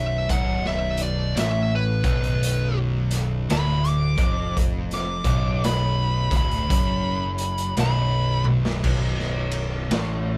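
Ominous and sludgy, this slow, swung stoner-doom excerpt has a compressed fuzz lead guitar soloing high above a low riff on Bm from a bright, double-tracked overdriven guitar, two thick fuzz guitars (one very quiet, one dark in the background) and a growling overdriven bass, while an up-front garage drum kit with a boomy kick, dark cymbals and a gritty, rolled-off top plays a fill at 8.3 seconds before the harmony drops out at 8.8 seconds, all in a lightly reverberant room that sounds like a band playing live.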